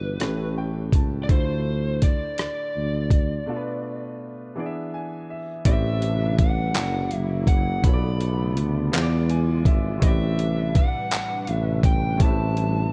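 Sultry and late-night, this slow six-eight R&B at 55 BPM sets a picked, overdriven electric guitar melody over clear concert grand piano with deep-bass fills, a dark, smooth-topped jazz-style tuba bass up front, and a gritty, compressed sampler-style soul kit of thumpy kick, hi-hat, rim click and handclaps, while a hollow, flute-like chorused pad drifts into the background at 6.1 seconds as the harmony settles into A dorian in a dry, dusky mix.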